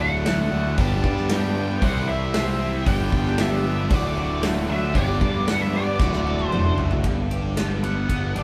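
This short classic rock excerpt opens with a confident, sunny groove in 4/4 at 115 BPM. A dark octave-fuzz lead guitar carries the melody through wah and distortion over a growly, up-front fuzz bass. Two picked, double-tracked electric guitars share the riff: one bright with overdrive, the other mellower, compressed and phased, sitting in the background until it drops out at 7.0 s. A big acoustic drum kit joins at 0.3 s with brilliant cymbals, a medium-tuned snare and a tight kick, and a drum fill leads into a brief lead guitar solo at 7.1 s as the chords move from D, G and C to a closing Gadd9. Tucked far beneath are a very quiet, fresh-stringed dreadnought acoustic guitar, a full tonewheel organ with slow rotary speaker and chorus vibrato, and a faint metallic cowbell, while moderate studio reverb gives the band a natural, live-in-one-room feel.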